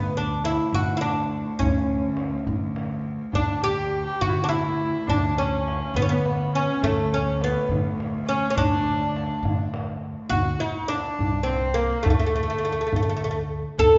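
This excerpt of a stately Persian modal ensemble piece opens on a fretless, plectrum-plucked oud with double strings, sitting up front and carrying the melody. Beneath it are a pizzicato upright bass with steel strings and a biting cello drone on D, bowed with an airy edge and light vibrato. A tight tombak played with soft hands sounds distant, keeping a straight 6/8 pulse at 69 BPM in dotted quarters. At 3.3 s a nasal, earthy kamancheh enters with a second line, adding portamento and its own light vibrato. The piece begins in dastgah mahur on D and moves to dastgah homayun at 10.3 s, and the cello drone drops out at 10.4 s. A wet recital-hall reverb gives the whole a warm, churchlike bloom, with the top end gently rolled off.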